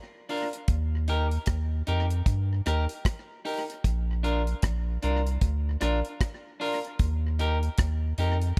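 In this sunny, warm roots reggae piece at 76 BPM with a swung sixteenth feel, a dry, tight acoustic drum kit of kick, hi-hat and rim click carrying tape echo and a clean, picked electric guitar carrying dub echo start at 0.3 s. A round, deep sub bass joins up front at 0.7 s, and all move between Bb and Eb in an echo-heavy studio reverb.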